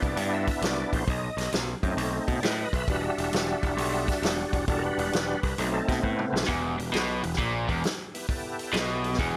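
A thick, lightly overdriven tonewheel organ takes a smoky solo through a slow rotary speaker over growly picked bass and a punchy vintage drum kit in a swung blues rock and southern rock groove, until a drum fill leads to a heavy, double-tracked electric guitar riff entering at 6.5 seconds.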